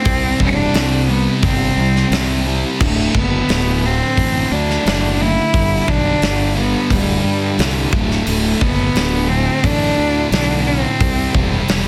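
A straight 4/4 pulse at 88 BPM drives this bittersweet, cathartic quiet-loud alternative rock excerpt, where a big acoustic drum kit with a punchy kick, soft clipping on that kick and a medium-tuned snare sits up front beside a thick, double-tracked picked fuzz guitar riff, a dark, round overdriven fingered bass holds the low end, and a clear, focused bowed cello carries the melody with vibrato and slapback echo, the whole set in small room ambience under a dense, heavily limited modern master.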